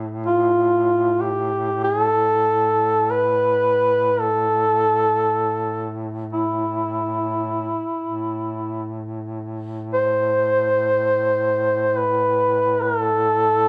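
A mellow duduk carries the up-front melody of this solemn, mournful Caucasian folk lament in free time and A minor, singing with vibrato and scooped notes from 0.3 seconds over a low, warm duduk drone that sounds from the very start, all heard live in one room with a moderate large-studio reverb in this passage cut from a longer piece.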